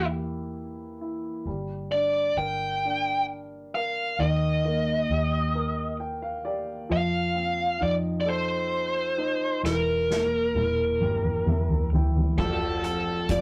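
A dark, distorted lead guitar carries the aching, dramatic melody of this six-eight pop ballad excerpt over a clear, long-sustaining baby grand piano that adds fills and a round, foam-muted vintage electric bass; a roomy soft-mallet drum kit with dark cymbals and a punchy kick enters with a fill at 9.6 seconds, and a fingerpicked plugged-in steel-string acoustic guitar slips in quietly at 12.4 seconds, all captured with a rough rehearsal-room feel in a small reverberant space.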